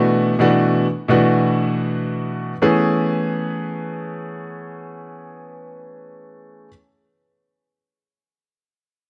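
Nostalgic and soulful, this short hip hop excerpt features a concert grand piano with a smooth, vintage tone, deep bass and an up-front presence, its cassette-tape colour sitting in light reverb as it plays an E7sus4/B chord before moving to Amaj9 at 2.6 seconds.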